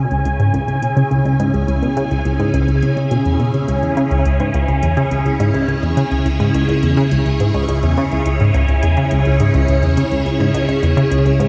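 Cosmic and expansive, this short cut of ambient, sequencer-driven space music moves at 105 BPM in 4/4 with a straight feel in C# minor, tuned to A4 = 435 Hz, resting on a single C#m chord. A tight, detuned sawtooth synth riff with a fast filter pluck drives the low register up front through chorus and analog delay, while a swirling, vintage string machine holds bright sustained chords above it, treated with ensemble chorus, phaser and shimmer reverb. Metallic electronic hi-hats and woodblock sit in the background with analog delay, fading in from the start, all placed in a generous scoring-stage reverb with a cassette-tape character.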